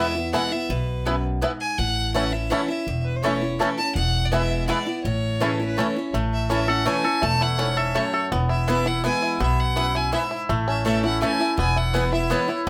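Lively and joyful, this bluegrass passage in 3/4 sets a clear, focused fiddle melody up front over twangy banjo arpeggios played with fingerpicks, boxy picked archtop guitar accompaniment, woody mandolin stabs and a growly, thumpy pizzicato upright bass, while a second, smoother fiddle adds a rich supporting line from 3.0 to 6.1 s, heard in a moderate studio ambience.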